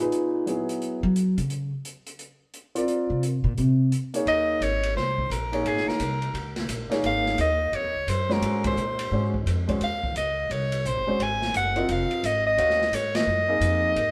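Cool and hypnotic, this modal jazz excerpt swings briskly at 173 BPM in 4/4. An intimate grand piano sets the harmony from the start, its audible action noise and long sustain sitting up front, while an open acoustic drum kit of hi-hat, kick, ride and snare adds dark cymbals and a boomy kick underneath. The opening stretch features a woody, thumpy pizzicato upright bass solo. At 4.3 seconds the music settles into Eb dorian and a punchy soprano saxophone takes the melody with vibrato and forceful jazz phrasing, riding high over the band. The group hits accents at 8.6 and 13.1 seconds, and the whole live performance is wrapped in the reverb of a stone room.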